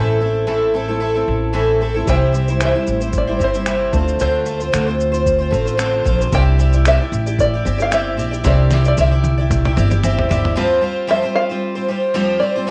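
A lightly swung 4/4 groove at 113 BPM in F major sets an easy-going, sunny mood in this acoustic pop excerpt, where a twangy, plunky fingerpicked open-back banjo carries the melody over a shimmering, octave-doubled twelve-string guitar and a woody pizzicato upright bass, both up front. At 2.1 seconds a gritty, compressed sampler-style drum kit with a thumpy kick, fat snare, finger snaps, shaker and toms enters together with a very quiet, dark, mellow grand piano, the drums closing with a fill before dropping out at 10.6 seconds. The bass stops at 10.5 seconds, leaving banjo and guitar to finish on an Fsus2 chord in a light, small-room reverb.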